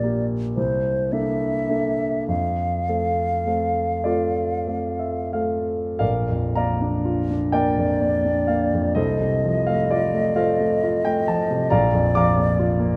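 A mellow, hollow-toned silver flute carries a tender, lyrical melody between C5 and F5, its pure metal tone heard close, with vibrato and tongued notes. Beneath it, a concert grand piano sits up front with a natural sound and deep bass reaching down to Bb1. This romantic classical duo moves in a slow, rubato 6/8 at 28-46 BPM in dotted quarters, starting in F major and shifting to Bb major at 6.0 s, all bathed in a wet recital hall reverb with a 1.7 s decay and a dark production, cut from a longer piece.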